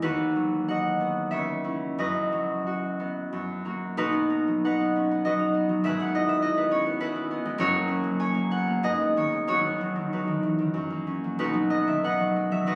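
Captured on a phone in the room, this short cut from a longer classical piece carries a moderate studio reverb with a club-like ambience and some compression. A single concert harp plays alone throughout its 12.8 seconds, sitting up front with an acoustic, ringing tone that is warm and fingerpicked. The mood is dreamy and serene, moving in a rubato 3/4 between 87 and 104 BPM in B major, tuned to A4 = 438 Hz. The harp spans a broad range from F#1 up to G#5, opening on B/D# and drifting through C#m and F# in its first phrase. At 4.0 seconds a new section settles on B and wanders through E/G#, G#m and B/F# before resolving back to B at 11.4 seconds.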